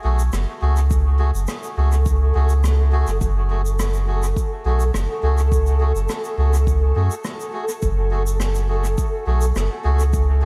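A straight 4/4 groove at 104 BPM sets this hazy, meditative ambient dub piece in F# minor, with distant, roomy shaker and rim click carrying dub echo from 0.2 seconds and a deep, layered electronic kick drum arriving at 0.9 seconds. A round, soft sub bass with tube saturation sits up front beneath reedy, breathy melodica stabs that trail off in dub echo. A cloudy, detuned granular pad enters at 0.9 seconds, holding blurred, slowly blooming F#madd9 chords in its own reverb, all inside a light small-room ambience.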